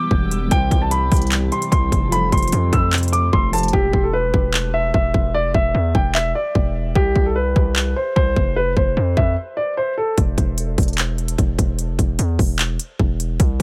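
A half-time trap beat at 149 BPM, built on a hard-clipped kick, crisp hi-hats and handclaps over a heavy, saturated distorted 808-style bass, drives this dark, menacing hip hop excerpt in E phrygian, where an intimate, mellow grand piano melody with audible action noise, long sustain, tape echo and a low-pass filter sits up front above round, warbling electric-piano-like synth keys with chorus and a cloudy, evolving granular pad in the background, both of which fall away around 3.7 seconds as the hi-hats go quiet, before a break arrives at 9.4 seconds, all in a dry mix.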